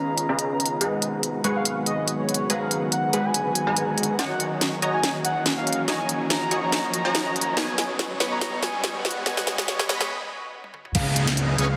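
A punchy, detuned supersaw stab sits up front in this dreamy, emotional future bass build-up at 142 BPM in G# dorian, its riff pumping against the sidechain while a low-pass filter sweeps across it for the whole passage. Alongside it, a velvety synth lead carries the melody with vibrato, chorus and dub echo. An airy, breathy pad holds slow-attack chords, and a very quiet, thick analog bass sits underneath. A crisp, sharp trap kit drives the half-time, lightly swung groove, with a drum fill arriving at 4.2 seconds. A riser and downlifter stay in the background as the harmony moves through G#m7, F#6 and B69 toward a break at 10.1 seconds, where a knocking, layered electronic kick lands at 10.9 seconds before C#13 returns. A lush hall reverb and a dense, heavily limited modern master frame this cut from a longer piece.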